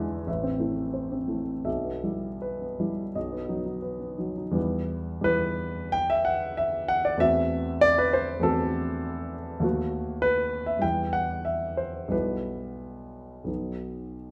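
A single concert grand piano sits up front in a wet recital hall, its 1.5-second reverb blooming around notes of short sustain and a deep bass. This romantic character piece in E minor is stormy and brooding, moving at 79 to 103 BPM in 4/4 with a free rubato feel, and the instrument is tuned to A4 = 441 Hz. The warm piano plays alone throughout, spanning A1 to G5. A brief opening passage travels from A minor through E minor over B to a B major chord, and a longer second passage begins at 4.6 seconds on E minor. From there it moves through F#m7b5 over E and B7 over D# before returning to E minor and settling on B as the fragment breaks off from the longer piece at 14.3 seconds.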